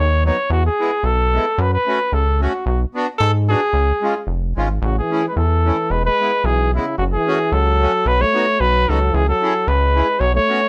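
A jolly, bouncy alpine dance band tune in F# minor opens with an up-front trumpet carrying the melody in a smooth, classical style with light vibrato, over a rubbery, nasal square-wave bass with transformer saturation and a reedy accordion accompaniment with slow beating. At 111 BPM in a swung 2/4, the chords move through B, E, F#m, Bm and C#, and a soft-attack euphonium enters at 4.8 s with a warm second line. The dry, gritty recording carries light reverb, and this excerpt is cut from a longer piece, ending at 10.7 s.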